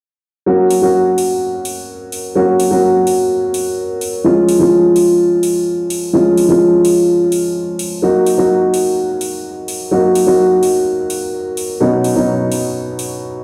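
A straight 4/4 pulse at 127 BPM sets the pace for this festival progressive house passage in F# major, cut from a longer piece and carrying an uplifting, triumphant mood. An electronic hi-hat enters at 0.7 seconds, its layered, metallic hats sitting back in the mix beneath the piano. The dark grand piano carries the accompaniment from 0.5 seconds, a mellow, boxy tone placed up front and spanning B2 to F#4, with a dub echo trailing behind it. Its harmony moves through F#, C#/E#, D#m and Badd9, arriving on the final chord at 11.8 seconds. The whole passage sounds as though played on a big sound system in a bare stone room, with a short, wet digital room reverb giving it a small, enclosed space.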